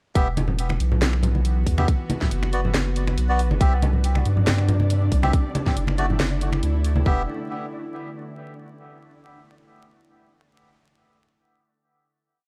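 A brooding, meditative deep dubstep piece in E minor at 139 BPM, set in a half-time 4/4 feel, opens at 0.2 seconds straight into the drop with a tight, up-front electronic kick, a cracking snare with finger snaps and closed and half-open hi-hats, and a deep, thick saturated sub bass playing chopped phrases. Echoing congas in high and low voices add bright, compressed hand-drum colour, while a reedy, nasal melodica punctuates the groove with sparse chord stabs trailed by dub echo. Beneath them, a string-like bowed drone with vibrato holds tense sustained chords through its built-in reverb as the harmony moves from E minor through B5, C and D. At 3.9 seconds a grainy, flickering texture enters in the background, holding a high note behind the mix. The drop gives way at 7.1 seconds to a final E5 chord, all within a dark production coloured by vinyl crackle.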